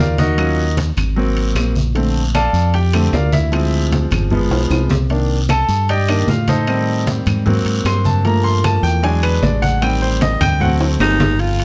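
Lightly reverberant and intimate, this fiery, sultry Afro-Cuban jazz excerpt in G minor at 152 BPM puts a clear baby grand piano soloing up front, with audible action noise and long sustain, over a round, punchy fingered electric bass, while low-tuned congas, ringing metal-shell timbales and saturated claves sit in the background beside a raspy guiro, drum fills arrive at 4.5 and 10.8 seconds, and an alto saxophone and a growling baritone saxophone enter only at 11.0 seconds as the cut ends.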